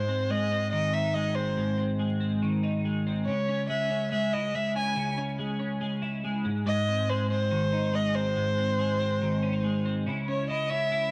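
Through a hiss of vinyl crackle and the light reverb of a small room, this home cassette recording of wistful, restless indie pop at 141 BPM in C# harmonic minor sets a bright, twangy twelve-string electric guitar playing chorus-tinged arpeggios up front beside a smooth, bowed solo violin carrying the melody with vibrato over a G# to C# minor sway, in a short fragment of a longer piece.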